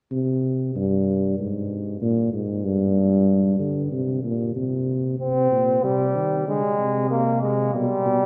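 A straight 4/4 pulse at 94 BPM drives this contemplative, imitative classical brass canzona in C minor, tuned to A4 = 436 Hz, where a mellow tuba carries the low bass line alone from 0.1 seconds until a trombone with light vibrato joins above it at 5.2 seconds, both set up front within a long, wet cathedral reverb.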